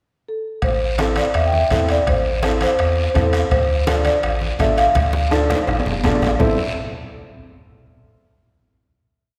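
A driving, danceable cumbia in straight 4/4 at 166 BPM, this short complete piece in A minor moves from Am to Dm and back to Am for a final chord. A marimba played with soft mallets opens alone in the pickup at 0.3 seconds, its mellow, round tone carrying a motif-based melody of song-like phrases. At 0.6 seconds the band arrives: a clean, dark sine sub bass plays a sustained cumbia bass figure, a distant bombo sounds kick and rim, low-tuned congas and ringing metal-shell timbales with bell sit in the background, and a raspy guiro scrapes alongside them. A woody upright piano enters at 1.0 second with open, long-sustaining triad chords in a rhythmic accompaniment. A drum fill starting at 5.0 seconds leads into the closing Am chord, all set in the generous wash of a concert hall.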